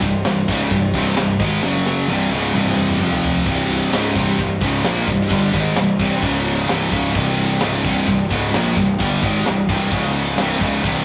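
Aggressive and dark, this heavy metal passage cut from a longer piece drives at 130 BPM in C phrygian. A double-tracked fuzz guitar and two scooped high-gain guitars, one bright and up front and one in the background, churn through a low riff over a growly overdriven fuzz bass, while a tight drum kit with a high-tuned snare, china and crash cymbals fills from 1.6 to 3.5 seconds, and a distant, floating chamber string section holds very quiet bowed chords beneath it all in a rough rehearsal-room sound with moderate stone-room reverb.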